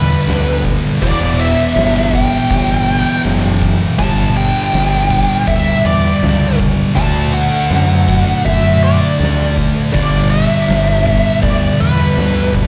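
A growling fingered electric bass sits up front in this brooding, hypnotic stoner and doom metal excerpt, its overdriven tone punchy and low as it anchors the riff at a slow 81 BPM in straight 4/4. Alongside it, a dark, compressed fuzz lead guitar carries the melody high in its range, colored by wah, distortion, slapback echo and analog delay. Two thick fuzz guitars grind out the riff further back in the mix, their picked, distorted tone heavy and warm. An oversized, low-tuned acoustic drum kit enters at 0.3 s with a fat snare, punchy kick and crash cymbal, sounding saturated and gritty in a bright stone room. The harmony moves from G through Em, G5 and D before returning to G, with the band tuned slightly below standard pitch at A4 = 438 Hz. The whole performance comes across as a live gig heard through the venue's PA, with recital hall reverb and small room ambience adding a sense of space.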